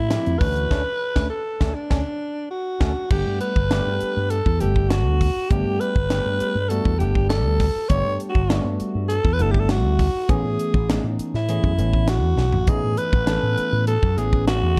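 Electric jazz fusion with a bright, slick mood, this short passage, cut from a longer piece, moves in a straight four-four feel. A growling alto saxophone carries the melody up front, raspy and close-miked with a light vibrato, sitting in a middle register. Beneath it, a punchy slap bass runs through an envelope filter for an amped, electric bite, while a bell-like tine electric piano adds clean accompaniment colored by a phaser. A crisp fusion drum kit with a high-tuned snare, punchy kick, hi-hat, crash and toms sounds airy and polished in a studio room. The full band hits accents from 0.7 to 3.1 seconds before the harmony settles from Dmaj7 onto Gmaj9 and later Amaj9, with a drum fill at 12.4 seconds, all wrapped in studio reverb and a dark production.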